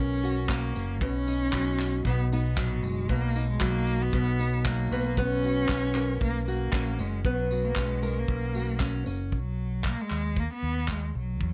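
A straight 4/4 groove from a loose indie drum kit, with a punchy kick, handclaps and tambourine, drives this carefree, sunny acoustic pop excerpt, all of it caught with close, detailed microphones and light reverb. A rich, bowed cello carries the melody with vibrato and a nasal, boxy focus, over a punchy, amped fingered electric bass. A fingerpicked steel-string acoustic guitar, warm with audible finger squeak, accompanies until it drops out at 9.9 seconds.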